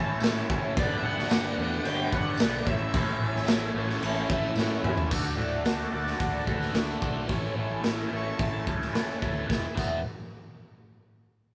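A straight 4/4 pulse at 110 BPM drives this swaggering, rowdy garage rock cut, with a punchy, saturated drum kit up front in a bright stone room and a jingly tambourine in the background until 4.7 seconds. A raw, double-tracked guitar riff with overdrive and phaser sits over a growling overdriven bass, while a dark octave-fuzz lead guitar carries the melody until 3.7 seconds and a buzzy vintage combo organ holds sustained chords with light vibrato and adds fills. The chords move from A and G to D before landing on E at 9.5 seconds, captured as a rough rehearsal-room recording.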